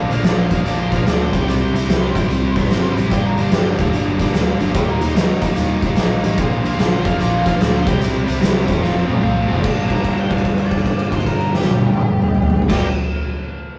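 A crunchy, double-tracked overdriven guitar riff and a round, foam-muted electric bass open this smoky, brooding slice of swung blues rock with a southern rock edge, joined almost at once by an oversized, low-tuned drum kit with a punchy kick, fat snare and dark cymbals sitting up front. A dark octave-fuzz lead guitar hovers in the background as the chords move through Bb, C, Gm and Eb, until a drum fill at 8.8 seconds leads into a new section where a long note is held from 9.6 seconds over G minor. The rough rehearsal-room sound carries tube saturation and a small room's moderate reverb, giving the whole cut a gritty, live feel.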